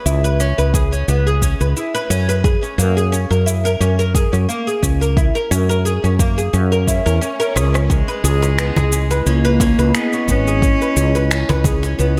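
An earthy organic downtempo excerpt opens on bright, plectrum-plucked oud arpeggios with tape echo, soon joined by a growly, round fretless bass up front and tape-tinged electronic cabasa, rim clicks and finger snaps, with a deep electronic kick entering at 0.7 s. After a faint background swell and a drum fill, a distant, floating bowed cello melody with delay arrives at 7.9 s over a warbling, nostalgic lo-fi pad carrying chorus, 12-bit sampler grit and sidechain pumping. A woody cajon played with hard hands sits in the background from 8.4 s, and the dreamy mix is soaked in plate reverb.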